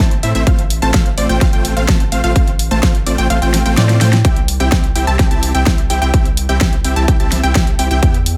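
An anthemic, triumphant festival progressive house excerpt in C major at 127 BPM opens with everything at once: a punchy, overdriven electronic kick up front, a big-room drum kit with a huge snare and hi-hat, a deep saturated sine sub bass, a thick, detuned supersaw riff with vibrato, and a lush, bright unison pluck playing arpeggios, the bass and synths all pumping to the sidechain and both synths carrying dub echo. The kick drops out from 3.3 to 4.2 seconds while a drum fill lands at 3.9 seconds, and the harmony moves from F over A to C at 4.2 seconds. The mix is dry, with little reverb.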